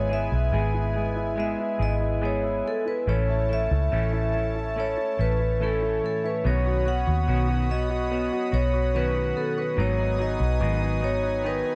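Pop ballad in a heartfelt, tender mood, moving in a straight 4/4 feel and cut from a longer piece. A vibraphone struck with medium hard mallets, motor off, carries the melody with a metallic, ringing tone that sits in a boxy small room. A clear concert grand piano accompanies with an intimate, polished sound, its action noise audible and its notes holding a long sustain, while a clean electric guitar picks bright, twangy arpeggios touched by slapback echo. A smooth sawtooth analog pad with soft attack and chorus holds sustained chords, and a vintage foam-muted fingered electric bass sits up front with a dark, round, punchy tone until 11.6 seconds. The harmony moves from E/G# to A, then Badd9 and G#m7, all captured as a dry, close 1970s-style studio recording with small room ambience.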